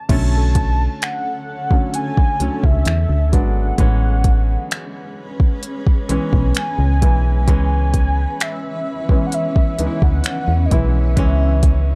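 The recording has a dark, close production with little reverb, and it is cut from a longer contemporary R&B piece. At a slow 65 BPM in 4/4 with a straight feel, the mood is sensual and longing as the harmony moves through Bm9, E9, Amaj9 and C#m7. An electronic drum kit sits up front with a soft kick, crisp hi-hat, finger snaps and a crash cymbal, all touched with overdrive, while a punchy, round FM bass holds the low end beside it. A polished baby grand piano with short sustain plays the accompaniment, and from 1.1 seconds a cloudy, evolving granular pad adds blurred, bright sustained chords bathed in its own reverb. Over this, a velvety synth lead blending sawtooth and triangle tones carries the melody with vibrato, chorus and tape echo. A very quiet, gentle pluck with chorus adds texture only until 3.3 seconds.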